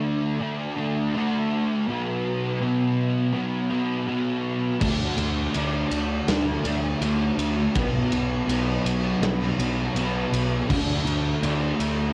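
Melancholic and brooding, this short shoegaze and dream pop excerpt opens with a double-tracked, fuzz-drenched guitar riff alone, its chorus and cassette-tape grit giving the compressed tone a hazy, worn edge as it moves between D5 and B5 chords. At 4.8 seconds an overdriven, punchy picked bass and a big-room drum kit with a punchy kick, medium-tuned snare, crash and ride, and a rolled-off top arrive together, the drums also carrying a cassette-tape texture. Light reverb and small-room ambience frame the whole home-recorded sound.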